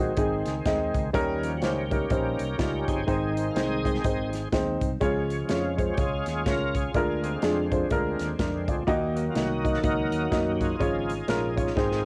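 A shouting, lightly overdriven tonewheel organ with key click, slow rotary speaker and chorus vibrato takes the solo from the first second over an intimate baby grand piano with audible action noise, a round, dark fingered electric bass and an airy acoustic drum kit with a punchy kick that enters at 0.2 seconds, giving this soulful, jubilant uptempo gospel cut in Db major a swung 124 BPM lilt, cassette-tape grit on the piano, organ and drums, light reverb, and a drum fill at 11.8 seconds.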